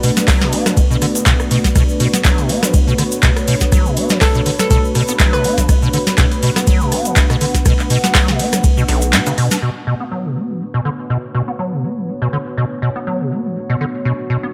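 A swung 4/4 groove at 122 BPM drives this hypnotic, gritty acid house excerpt in B minor, built on a deep, up-front electronic kick that sounds re-recorded in a small room. Around it a booming analog drum machine lays down dry handclaps, metallic hi-hats, ride cymbal, rim clicks and a tonal snare, while a very quiet, pitched-up breakbeat kit adds compressed hi-hat, shaker and snare beneath a grainy acoustic egg shaker in the background. The squelchy, resonant square-wave acid bass riff sits up front with a filter pluck and fast attack, thickened by ensemble chorus, cassette tape color and tape echo. A moody detuned sawtooth pad with a sub octave holds a Bm7 chord and pumps against the kick, layered with a warbling, nostalgic lo-fi pad carrying ring modulation, chorus and its own reverb. At 4.2 seconds a bouncy, bright square pluck with a filter sweep and dub echo briefly appears. The kick drops out at 9.1 seconds for a drum fill and a band accent, and after 9.6 seconds the drums fall away, leaving the bass and pads under light reverb.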